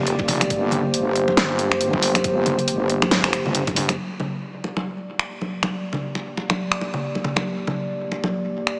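An up-front dubstep kit with a huge snare, bright hats and finger snaps drives this dark, cavernous deep dubstep fragment in a swung half-time feel, joined by a knocking, tape-tinged electronic kick and thick-skinned, band-limited congas trailing dub echo, while a saturated, detuned sawtooth wobble bass sustains low notes beneath a moody, slow-attack analog pad with a moving notch holding a sustained chord, until the bass and kick drop out around 4.0 seconds, all steeped in huge ambient reverb and squeezed into a heavily compressed, small-speaker radio sound.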